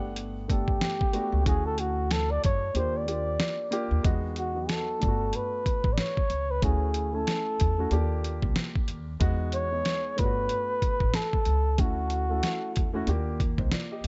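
Smooth and relaxed, this jazz-hop passage at 93 BPM with a swung 16th-note feel puts a breathy, close-miked flugelhorn solo up front, with vibrato and scooped notes, over mellow dark grand piano chords, woody pizzicato upright bass and a gritty, compressed boom bap drum kit whose thumpy kick drops out from 2.8 to 4.0 seconds, in a lightly reverberant, dark and warm production where the horn falls away at 13.1 seconds.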